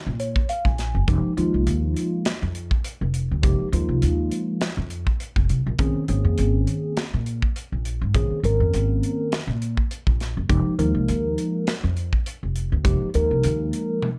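A lightly swung sixteenth-note groove in 4/4 drives this dark, nocturnal electric jazz fusion excerpt, where a mellow tine electric piano opens with a fill, then comps through Bbm7, Fm11 and Bbm11 chords, its clean tone shimmering with phaser and plate reverb, over woody, thumpy pizzicato upright bass and an airy, polished small-room drum kit with a punchy kick and medium-tuned snare that closes on a fill at 14.0 seconds.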